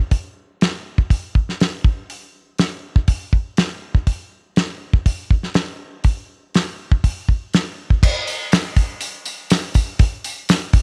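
The rhythm is a straight, driving 4/4 rock beat at 121 BPM, laid down by a damped drum kit with a 70s character that carries the whole excerpt from 0.1 seconds to its cut-off at 10.8 seconds. The kit sits up front and sounds acoustic and dry, with a fat snare and a tight kick, while hi-hat and crash cymbal fill out the pattern. The mood is brooding, and the short, deadened tone of the drums lends it a heavy, purposeful weight. At 8.0 seconds the groove moves into a new section, and at 8.3 seconds a jingly tambourine joins, close and dry but tucked in the background. A small room ambience gives the performance a modest sense of space, and the piece ends abruptly as a fragment lifted from a longer track.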